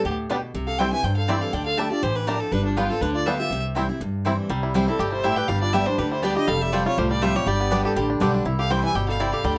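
Bluegrass with a lively, joyful feel, this short cut from a longer piece opens with a clear, smooth fiddle carrying the melody up front over a bright, full-bodied picked dreadnought guitar and a growly, woody upright bass played pizzicato. A metallic, nasal lap resonator guitar, played with slide and fingerpicks, adds a mellow second line in the background, while a twangy, percussive banjo playing arpeggios and a double-strung mandolin adding stabs both join at 0.3 s. Light reverb surrounds the acoustic band as the chords move through G, C, Dsus4 and G7.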